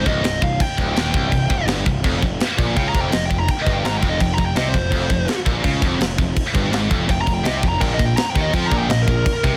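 Aggressive and dark, this heavy metal cut, taken from a longer piece, charges along at 166 BPM in a straight 4/4. A high-gain lead guitar with a shadowy, distorted tone plays a solo melody in the upper register across the whole 9.6 seconds, over chords moving from Cm to F5 and then Bb5 at 7.8 seconds. Beneath it, three distorted rhythm guitars pick out low riffs: two bright parts, one of them high-gain, sit in the background, while a double-tracked, compressed one is very quiet. A fuzz-laden electric bass, overdriven, growly and punchy, anchors the low end. The tight, acoustic drum kit is the most forward part, with a big-room sound, a medium-tuned snare, a firm kick and gleaming crash cymbals. Light reverb and a dense, heavily limited modern master give the whole cut a loud, crushing weight.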